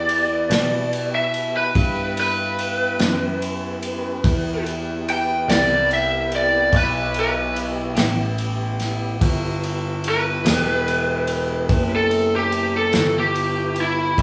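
An overdriven lead guitar through a small cranked amp carries a soulful, brooding solo up front across this slow E minor blues in 12/8 at 48 BPM, cut from a longer piece. A tonewheel organ holds sustained chords through a slow rotary speaker with chorus vibrato, while a clear grand piano plays the bass line with long sustain. An airy acoustic kit with a punchy kick, ride cymbal and snare drum enters at 0.1 seconds, and a clean electric guitar adds tremolo-washed accompaniment in the background from 0.5 seconds, all captured as a band playing live in one room with moderate studio reverb.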